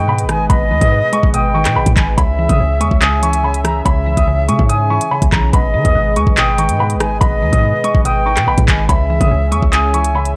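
An up-front drill drum kit with a knocking kick, crisp hats, handclaps and rim clicks enters at 0.2 s over a punchy, heavy 808-style bass, setting an ominous, dark half-time hip hop groove. High above, a boxy, low-passed grand piano carries the melody while a pure concert flute with vibrato and analog delay adds an expressive second line. Underneath, a crystalline wavetable pluck with chorus and a moody, detuned analog pad fill out the harmony, all captured in a dry, gritty recording with cassette and transformer saturation.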